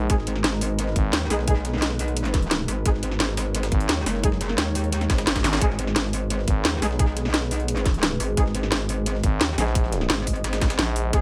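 A straight, up-front pulse of tight electronic kick, cracking snare and metallic hats, layered over a gritty, pitched-up sampler-style kit buried very quietly beneath, pushes this tense, mechanical slice of dark technical drum and bass, where an aggressive, saturated wobble bass with chorus sits up front, a thick growling FM bass cuts in and out, dark classical-style brass stabs ring through tape echo, a deep, moody detuned pad pumps softly in the background, and a faint electronic zap flickers at 5.4 seconds alongside a drum fill.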